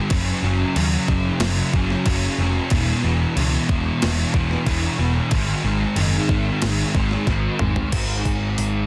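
This is a short slice of shoegaze and dream pop rock cut from a longer piece, blissful and dreamy in mood with a straight feel in 4/4. A double-tracked fuzz guitar carries the riff up front, its distorted, picked tone thickened by ensemble chorus and sitting in a low register. Beneath it, a picked electric bass gives a round, amped foundation. A crisp 8-bit drum machine with a sampler-style character adds a thumpy kick, a medium-tuned snare, hi-hat, toms and crash, all pushed through overdrive and placed prominently in the mix. The harmony moves through Gb5, E5 and Ab5, and a drum fill at 7.3 seconds marks the close of the passage. Digital ambience surrounds the parts, and the master is dense and heavily limited in a modern style.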